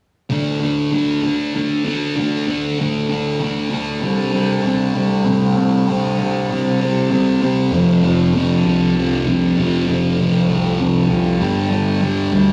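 Rock in a slow 6/8 at 65 BPM, hazy and trippy, where a thick, double-tracked fuzz guitar riff with phaser sits up front over a softly plucked, buzzing, shimmering tanpura drone, joined at 7.7 seconds by an overdriven fuzz bass as the chords move from D5 through Csus2 and F5 to Gsus2, all in the small-room ambience of a rough rehearsal recording cut from a longer piece.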